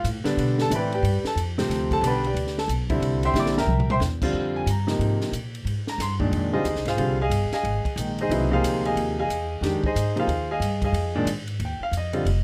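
Lightly reverberant, this intense, searching modal jazz excerpt swings at 182 BPM in 4/4, with an up-front concert grand piano of natural tone and deep low end comping over a woody pizzicato upright bass and a dry cocktail drum kit with dark cymbals, a high-tuned snare and a punchy kick, whose fill at 3.3 s leads the harmony from G and C7 into a settled F dorian on Fm7 at 4.3 s.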